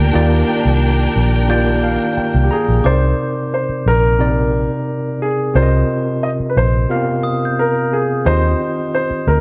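A straight 4/4 soul groove with a warm, smooth mood, cut from a longer piece, rests on a round, foam-muted vintage electric bass up front and a worn, slightly out-of-tune tine electric piano with light overdrive, which plays a fill at 1.5 seconds, while a lush bowed violin section with vibrato sings a second line until 2.8 seconds, a warm grand piano carries the melody from 2.4 seconds, and a sparkling, bell-like glockenspiel rings softly in the background of a small room.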